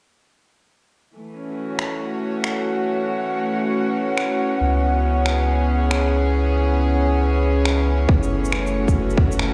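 A rich, floating string section carries this ghostly, nocturnal future garage piece, holding soft-attack bowed chords from 1.1 seconds with a sidechain pumping that makes the ensemble breathe against the beat. The harmony moves from F#m7 to C#m7 and back in F# minor, at 138 BPM in 4/4 with a 65% swing on the sixteenths. Overdriven electronic finger snaps and shaker add a gritty pulse, while an airy, wind-like tuned noise texture hovers dark and breathy in the background on a high F#, trailing its own reverb. A deep, round sine sub bass enters at 4.6 seconds, also pumping with the sidechain, and a tight, overdriven electronic kick arrives up front at 8.1 seconds as the piece opens into a new section. The whole mix sits in a moderate recital hall reverb and sounds as if replayed through a big sound system in a bare room, giving this cut from a longer track a cavernous, after-hours atmosphere.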